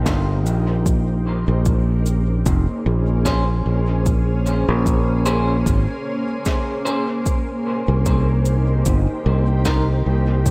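Up front, a bright, growly fingered electric bass anchors this meditative, hazy ambient dub excerpt in Bb dorian at 75 BPM, with a lightly swung 4/4 feel and chords moving from Cm7 to Bbm9 and back to Cm7 at 7.3 seconds. Beneath it, a blurred, detuned granular cloud pad holds sustained chords with slow attack and long release, roughened by vintage 12-bit sampler grit and its own built-in reverb, while a deep, tape-toned electronic kick sits under distant, roomy brushed snare and cabasa carrying dub echo. From 3.3 to 9.8 seconds, a slightly broken-up electric guitar adds compressed, picked stabs bathed in lush chorus and dub echo, all set in a light studio reverb.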